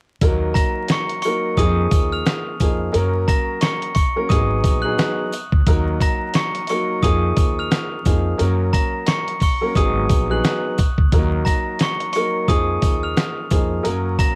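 Boom-bap hip-hop in Eb minor at 88 BPM, this tough, moody fragment of a longer piece rides a 16th-note swing through a looping progression of Ebm, Bb7sus4, Gb and Abm7. A dusty, sampler-style drum kit sits up front with a thumpy kick, a medium-tuned snare and hi-hat, its gritty, compressed sound carrying cassette-tape saturation and the character of a large room. A pizzicato upright bass with gut strings supplies a woody, dark low end, while a warm upright piano with long sustain, filtered and put through cassette tape, plays the accompanying chords. From 0.5 seconds a glockenspiel struck with brass mallets adds a bright, sparkling, bell-like melody high above, and saturated sleigh bells jingle softly in the background. The mix is dry and intimate, with the lo-fi feel of a home cassette recording and a layer of vinyl crackle.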